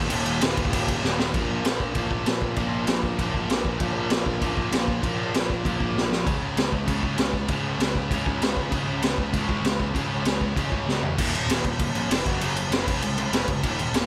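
Driving straight 4/4 punk rock with a rowdy, upbeat energy opens this excerpt, the raw garage drum kit sitting up front with a punchy kick, a high-tuned snare and a gritty, saturated small-room sound, snapping out fills at 1.0, 6.0 and 10.9 seconds. A double-tracked, overdriven electric guitar riffs through power chords from Eb5 to Bb5, Db5 and Gb5 before landing on Db/F, while the fuzz picked electric bass growls brightly in the background beneath a light reverb.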